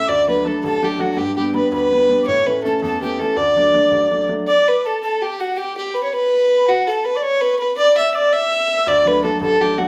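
A dark, woody fiddle leads this rollicking Celtic folk excerpt, bowed by a single player up front with light vibrato and a smooth top as it carries the melody in D major. Above it, a breathy, mellow metal whistle traces a quieter second line, its tongued notes carrying chiff and vibrato with an unsteady quality. A bright upright piano accompanies in the lower register, brilliant and intimate, with audible action noise and a polished, present tone, moving through D, G and A before dropping out at 4.4 seconds. The fiddle and whistle carry the repeated section alone until the piano returns on D at 8.9 seconds. Played at 109 BPM in a lively 6/8 with a straight feel, the band sounds as if performing together in one large studio, wrapped in a moderate reverb.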